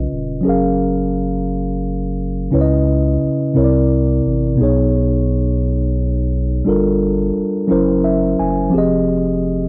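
Set in a slow, straight 6/8 at 58 beats per minute counted in dotted quarters, this short R&B passage cut from a longer piece feels tender and unhurried, with tuning sitting at A4 = 439 Hz. A mellow tine electric piano carries the accompaniment up front, clean in tone and colored by cassette tape, ranging from B2 to Ab5 across the full 9.7 seconds. Beneath it, a round analog bass holds the low end from Eb1 to Db2, its sustained, dark notes carrying a slightly nasal edge and a fast attack. The harmony drifts through rich extended chords, moving from Gbmaj7 through Dbm7, C9 and B69 to Gm7, then Gb7#11 and Fm7. Between 7.7 and 8.7 seconds the electric piano slips in a brief fill. The sound is intimate and homespun, a cassette home recording with light reverb that keeps the whole mood soft and close.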